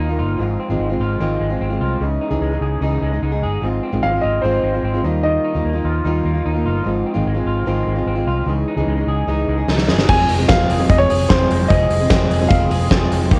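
This breezy, bright piece of jangly indie pop opens with a full-bodied fingerpicked steel-string acoustic guitar, a lo-fi, slightly broken-up electric guitar playing arpeggios through analog chorus and delay, and a round, foam-muted electric bass sitting up front, with the two guitars carrying a cassette-tape home-recording character. A woody upright piano with audible action noise and a touch of delay carries the melody from 4.0 seconds. A big rock drum kit with a fat snare and punchy kick, dark and rolled-off on top, enters with a fill at 9.7 seconds, and the piano returns at 10.1 seconds as the music moves into a new section.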